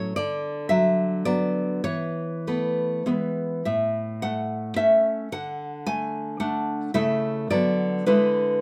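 Nostalgic and warm, this brief excerpt of a romantic piece for solo classical guitar moves in a rubato 3/4 at roughly 95-113 BPM in A major, with a bright, fingerpicked nylon-string guitar sitting up front in light reverb across its A2 to G#5 range as the harmony drifts from Bm/D through Esus4 and E to A, D and A/C# before closing on E7/D at 8.1 seconds.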